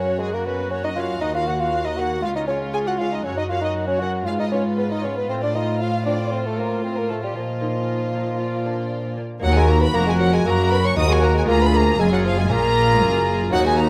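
A steady, straight 4/4 pulse at 117 BPM drives this dramatic baroque-style concerto movement in E-flat minor, a short passage cut from a longer piece. A solo bassoon with light vibrato carries the melody alongside a violin section played sul tasto with a soft, intimate attack, while a second violin section adds an expressive, rich-toned second line. A fingerpicked lute with delicate gut and double strings sits very quietly in the accompaniment, joined by a focused viola section with a smooth top. The cello section, sounding somewhat distant yet up front, anchors the bass, and a full-bodied double bass section enters at 9.4 seconds to deepen the low end as the music moves into a new section. The harmony travels from F# through E-flat minor, D-flat and G-flat to a suspended B-flat chord before returning to E-flat minor and closing on Bb7. Close, detailed microphones and light reverb keep the ensemble clear and present.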